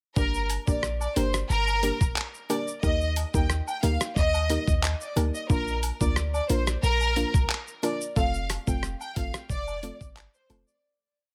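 A bouncy, sultry dancehall piece in G minor at 90 BPM opens at once with a lush, vibrato-laden violin section carrying a syncopated hook in tape echo, over soft, round plucked chords with chorus, a deep, boomy 808-style bass line and a gritty, pitched-down sampler drum kit whose thumpy kick, rim clicks, hi-hat, shaker and handclaps form a sparse, up-front beat. Cabasa and woodblock tick quietly in the background from 0.5 s as the harmony moves through Gm, Eb, Bb and F in a dry, close sound. The whole short piece fades out from 8.2 s to its end at 10.8 s.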